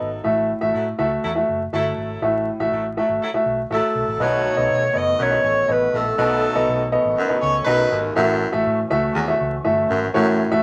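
Vinyl crackle and a moderate studio room frame this driving, passionate soul excerpt at 121 BPM in 4/4, moving from F#m7 to B7 and back. A clear, woody upright piano sits up front over a dark, round, foam-muted electric bass, while a loose horn section with octave doubling carries a second line until 8.0 s and a breathy, soft-attacked alto saxophone takes the melody from 3.7 s. At 4.2 s a raspy, growling baritone saxophone riff arrives alongside a very quiet, lightly overdriven tonewheel organ holding chords through a rotary speaker.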